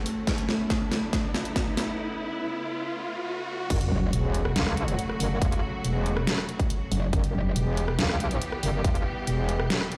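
Heavy and chaotic, this cut from a longer heavy wobble dubstep piece in F# phrygian moves at 140 BPM in a half-time feel, opening with a lush, distant string section holding sidechain-pumped chords and a nasal, boxy solo cello melody with digital delay, while a riser and sub drop build alongside an overdriven dubstep kit of crash, hi-hat, rim click and deep snare plus a punchy electronic kick, until the drop at 3.7 seconds unleashes an aggressive, metallic FM wobble bass, soon joined by a second, both saturated with chorus and overdrive, up front over chords moving from F#m to Em, all set in a large studio reverb as if played on a big sound system in a bare room.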